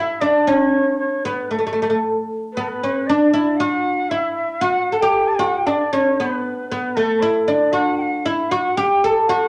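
A straight 4/4 pulse at 116 BPM drives this festive, passionate Arabic excerpt in D maqam rast, cut from a longer piece. A woody, deep fretless oud, plectrum-plucked on double strings and placed up front, carries the melody, while a breathy, reedy ney with vibrato and tongued notes plays a second line above it. Both play throughout the 9.5 seconds, set in a wet, club-sized reverb.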